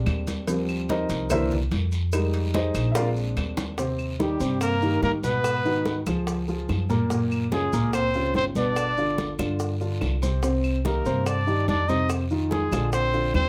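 Lively and danceable, this Afro-Cuban jazz excerpt in Eb major moves at 144 BPM, with an intimate grand piano up front over woody pizzicato upright bass. Ringing congas, tight high-tuned cowbell and bongos, distant claves, a raspy guiro and grainy maracas sit in the background. The piano takes a featured turn through 3.8 seconds, with a drum fill from 3.0 seconds. At 4.2 seconds a clear trumpet with vibrato enters up front while a bright, soft-edged trombone carries a second line beneath it, all in a moderate club ambience.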